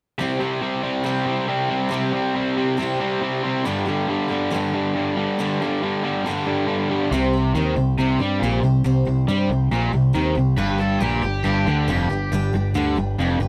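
Driving straight 4/4 rock at 138 BPM sets a confident pace in this short cut from a longer piece. A crunchy overdriven guitar sits up front with a riff, joined by a bright distorted electric guitar, while a full-bodied jumbo steel-string acoustic plays picked accompaniment underneath, all moving from C to G. At 7.1 seconds the harmony shifts to a C5 power chord and a growling overdriven bass arrives up front, direct and amped, adding low-end weight. From 10.6 seconds a raw garage guitar adds a short, bright overdriven second line high above as the chords return to G. The sound is dry and close, like a 1970s studio session, with little reverb around the players.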